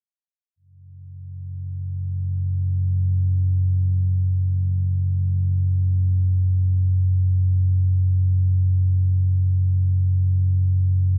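This ambient excerpt opens at 0.6 s with a high F#5, and a deep rumbling drone enters at 1.1 s to carry the piece alone until the end at 11.2 s. Floating in free time and tuned to A4 = 441 Hz, the music feels cavernous and desolate, with an ominous weight. The drone sits low, between F#2 and C#3, blending triangle and sawtooth tones that are detuned and wave-folded into a dark, rumbling texture. Its slow attack, long sustain and long release let each tone bloom and linger, while the drone stays up front in the mix. A drenched cathedral reverb with a 5.8-second decay, together with the drone's own built-in reverb, surrounds it in a vast, shadowy space, and the production leans dark and warm.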